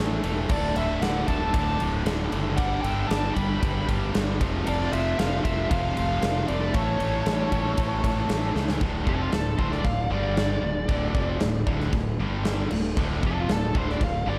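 Hard rock with a powerful, swaggering strut in straight 4/4, cut from a longer piece: three picked rhythm guitars (a bright overdriven stack, a distorted one in the background and a very quiet double-tracked high-gain layer) churn out riffs over a growly, fuzzed fingered bass and a huge arena drum kit with bright cymbals, a punchy kick and a medium-tuned snare up front. A dark, nasal lead guitar with a parked wah and analog delay carries the melody from 0.5 seconds, joined by a fuzzy octave-fuzz second line in the background until 8.5 seconds. After a drum fill at 8.6 seconds, the lead takes a solo over power chords, all set in a lush hall reverb for a big arena sound.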